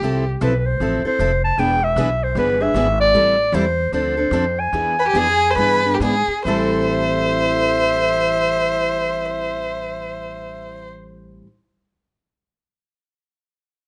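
Acoustic string swing in A minor, virtuosic and bittersweet at 131-154 BPM, opens with two picked steel-string acoustic guitars in plate reverb, the quieter one carrying finger squeak in the background, a woody, thumpy pizzicato upright bass and a brief touch of violin, before a warm, lightly vibratoed clarinet enters at 0.4 seconds with an up-front jazz melody and slapback echo. The tempo then slows from 3.1 to 6.5 seconds, and the dark, bowed violin with portamento and expressive vibrato returns as an up-front second line at 5.0 seconds, all captured in this short cut from a longer piece as a rough home demo with moderate studio reverb.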